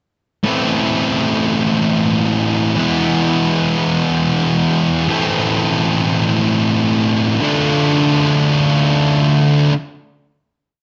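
Cathartic and cinematic, this short rock piece unfolds in a rolling 6/8 at a slow, weighty pace. A single thick fuzz guitar carries everything, entering at 0.4 seconds and playing alone until 9.7 seconds. Its tone is bright and heavily distorted, picked and double-tracked, with ringing chords sitting up front in the mix. The harmony moves from Am to E, back to Am, then to Dm before a final hit closes the piece at 9.7 seconds. A moderate large-studio reverb with a digital ambience surrounds the guitar, while the top end stays rolled off above 8 kHz.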